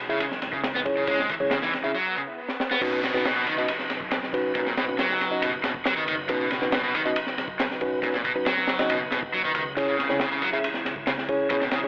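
Energetic and swaggering, this breakbeat excerpt at 138 BPM is led by an up-front overdriven semi-hollow guitar riff with tape echo and a crunchy, gritty breakbeat kit with a punchy kick, high-tuned snare and dark ride cymbal, all heard with a telephone sound and light reverb. Mellow tine electric piano stabs, also echoed and under a filter sweep, join a background tonewheel organ holding piping, scooped chords through chorus vibrato, slow rotary speaker and sidechain pumping, while a woody, thumpy pizzicato upright bass sits low in the mix. Very quiet ringing congas play only until 1.7 s, and a background swell and downlifter carry through a short break and drum fill into the drop at 2.8 s, where the harmony moves from C#m to Badd9.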